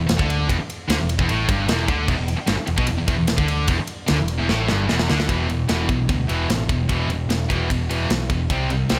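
A scooped, high-gain guitar sits up front, driving an aggressive riff through this hard rock excerpt in straight 4/4. Behind it, a second distorted, picked guitar also plays a riff from the background, adding extra edge. A growly, amped picked bass gives the low end a punchy weight, while a tight metal drum kit with bright cymbals, a medium-tuned snare and a tight kick sits forward in the mix with a big-room character. The riff rests on an E minor chord until a drum fill at 4.5 seconds leads into a power-chord section at 5.3 seconds. Light reverb and small-room ambience keep the overall sound close and punchy.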